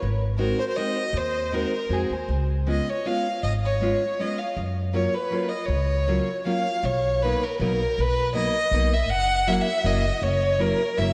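This musette waltz excerpt drifts in a nostalgic, charming rubato, with a dark, woody bowed violin carrying the melody up front through an analog delay, its light vibrato floating in a dreamy mix soaked in a lush hall reverb. A thumpy pizzicato upright bass sits up front beneath it from the start. A fingerpicked steel-string dreadnought guitar joins at 0.4 s with warm accompaniment, and the harmony moves to B major at 6.8 s.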